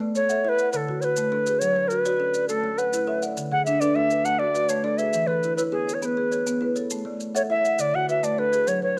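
A bright, reedy cedar flute in the Native American style carries the melody up front from 0.2 seconds, its crisp chiff and vibrato riding over a rippling, hypnotic southern African traditional cycle at 136 BPM in 12/8, where a woody marimba played with medium hard mallets and a soft, ringing kalimba spin mbira-style interlocking arpeggios through A, D, F#m and E chords, grainy maracas sit close and dry, and light small-room reverb frames this passage cut from a longer piece.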